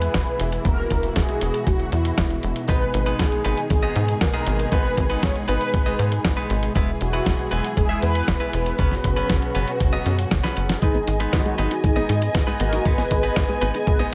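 A lightly reverberant mix opens this melodramatic, danceable italo disco excerpt at 118 BPM in G# minor, where a driving sawtooth sequencer bass and a gritty, thumpy electronic kick sit under a dusty sampler-style kit of filtered hi-hat and medium-tuned snare, both re-recorded in a large room. A mellow, brassy synth lead with chorus, vibrato and delay carries the melody over a dark, woody, lush string section holding sustained chords through E, G#m and F#sus4. A bright, twangy clean electric guitar adds stabs from 2.7 seconds, and after a drum fill at 10.4 seconds a very quiet, round analog pluck joins with arpeggios at 10.8 seconds.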